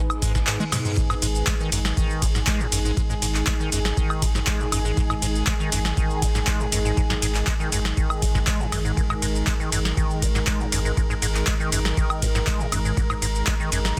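A moody sawtooth pad with chorus and built-in reverb sits in the background from the start of this trippy, raw acid house excerpt. Within a second it is joined by a booming, tape-warm analog drum machine with crisp snare and metallic hats, a deep analog kick, a round sine sub bass, and a squelchy, resonant square-wave acid bass riff with a filter sweep, chorus and delay, while a reverse cymbal and drum fill lead up to 1.0 seconds. From there a dark studio string section adds bowed, intimate sustained chords with light vibrato, the pad, strings and sub bass pump against the kick, and the dense mix is dry and heavily limited.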